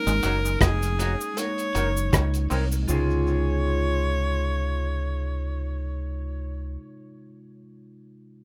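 Sweet and smooth, this lovers rock reggae excerpt in Db major moves at 79 BPM in 4/4 with a lightly swung sixteenth-note feel. A clear tenor saxophone carries the melody with pop-style vibrato and tape echo, while a bell-like tine electric piano supplies bright, clean chords, also touched with tape echo, over a progression from Ab7sus4 to Gb6 and then Dbmaj7. The fingered electric bass sits round, dark and up front, and the cloth-damped drum kit thuds with a tight kick, hi-hat and rim click, its sound muffled and gritty. A very quiet guitar plays a twangy riff, and a compressed, saturated cabasa adds texture with echo; the drums, riff guitar and cabasa all drop out by 3.2 s. An electric guitar through a small old amp keeps up slightly broken-up stabs with subtle chorus and echo until 6.8 s, and the rough home-demo mix stays dry.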